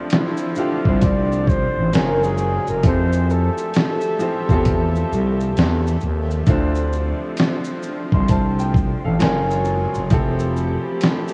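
A reflective, hazy lo-fi hip hop piece in D minor at 66 BPM with a swung 16th feel, moving through Dm7, F#maj9 and Fmaj9 chords. A breathy, whispered flugelhorn with vibrato and scooped notes carries the jazz-style melody until 6.0 s, over a brilliant, woody upright piano and soft sul tasto strings floating in the background, all three dulled by a low-pass filter. Up front sit a gritty, compressed sampler-style drum kit with a thumpy kick and a growling, thick FM bass, and the mix is dreamy, soaked in huge ambient reverb and cassette tape character.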